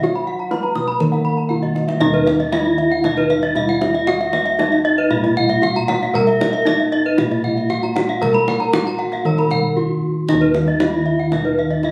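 Set in a straight four-beat metre, this cut from a longer Balinese gamelan piece has a shimmering, brilliant mood. A bronze metallophone struck with a wooden mallet carries the melody, close-miked and full, its paired tuning producing shimmering beats. Two higher metallophones spin arpeggios above it: one, played with a horn mallet, sounds bright and ringing, while the other keeps the dry, wooden-mallet attack of the lead. Bossed gongs supply a round, beating bass, and the kendang drums sound tight and acoustic, with a fill from 1.5 to 2.0 seconds. A lower, airy metallophone sits in the background as accompaniment, dropping out at 2.0 seconds and returning at 10.3 seconds. The whole is heard in a moderate hall reverb, captured on a phone in the room, giving the ensemble a live, resonant bloom.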